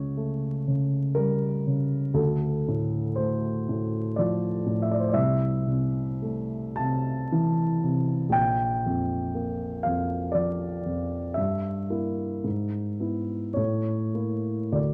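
Yearning and mournful, this romantic classical nocturne fragment for solo grand piano moves in a rubato 3/4 through a brief progression from A7/C# to Dm, Bb and an Edim/G before settling on A at 13.6 seconds, the piano sounding present, polished and up front with short sustain across a range from Bb1 to A5, captured by close, detailed microphones in light reverb beneath a layer of vinyl crackle.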